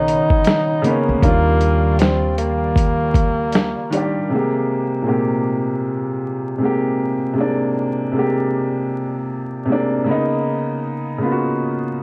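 A swung 16th-note groove at 78 BPM in 4/4 drives this mellow, dreamy lo-fi hip hop excerpt in Ab lydian, cut from a longer piece. A gritty boom bap drum kit, overdriven and sampler-style with a thumpy kick, medium-tuned snare and hi-hat, sits up front from 0.1 s. A pizzicato upright bass with a woody, growly tone on steel strings and a very quiet, dark, detuned pad with chorus and slow-attack chords support a breathy tenor saxophone lead, whose jazz-style line has light vibrato, scooped notes and a smooth top. A clear upright piano, softened by cassette tape and a low-pass filter, plays accompaniment over Bmaj9 and Ebmaj9 before the harmony settles on Abmaj9, and it carries on alone from 4.3 s to 12.0 s, returning to Bmaj9 near the close. The whole mix is coloured by a wet studio reverb, worn warbling tape with pitch drift, and a bed of vinyl crackle that gives it a dreamy feel.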